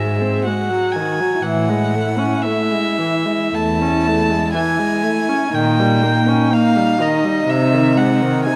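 A slow, melancholic and yearning romantic movement for string quartet opens with all four players together at 61 BPM in a free, rubato 4/4, moving from G#7 through Amaj7 and D#7/A# to G#/B#. Up front, the first violin carries the melody with a rich, airy sul tasto tone and light vibrato, while the second violin sings a dark, woody line beneath it, the viola floats a pure, soft-edged accompaniment, and the warm cello holds the bass with intimate sul tasto bowing until 8.3 seconds. The players sit in a wet concert hall with a long reverb tail, and a faint mains hum lies under this brief passage cut from a longer piece.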